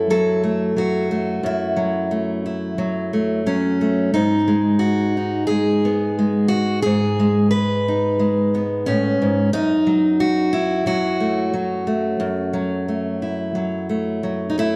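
A fingerpicked steel-string acoustic guitar plays alone from the opening moment: a melancholic, haunting solo folk piece in straight 4/4, moving from F#m7 to G#m at 4.1 seconds and back to F#m7 at 9.5 seconds. The guitar sits up front with bright, fresh strings and audible finger squeak, ranging from its low F#2 up to B4. A moderate stage reverb and a dark, warm production surround this short passage taken from a longer piece.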